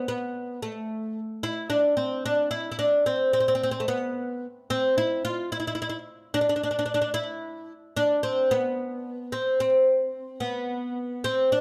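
Persian music in a straight 6/8, this brief excerpt cut from a longer piece carries a passionate yet stately mood. A solo oud carries the whole passage, playing from the start until 11.6 seconds within a compact middle register. Its plectrum-plucked double strings give a bright, woody voice with a deep body, and the fretless neck lends the line a fluid quality. A slapback echo trails each note on the oud, adding a subtle doubling to its sound. Close, detailed microphones place the instrument up front in a dry space with little reverb.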